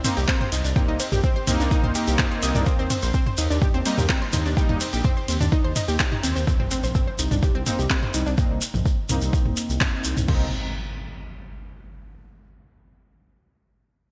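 A steady, straight 4/4 groove from an up-front, deep electronic kick drives this dark, dramatic melodic techno excerpt, with a tape-warm deep house kit adding metallic hats, handclaps, ride, crash and toms under gated reverb, its hats, cymbals and toms pumping against the kick. A grainy, mellow shekere recorded in a live room sits among the drums, while a rumbling, beating detuned saw bass, also sidechained, holds the low end. Above them, a lush, punchy unison pluck plays arpeggios through delay and sidechain pumping, and brassy, bold, fat analog synth brass stabs come through chorus and delay, dropping out at 4.8 seconds and returning at 7.7 seconds. A background impact lands at 6.5 seconds as the drop gives way to the next section. The harmony rests on one minor-seventh chord, and the bright 1980s-style digital production carries light reverb and digital ambience.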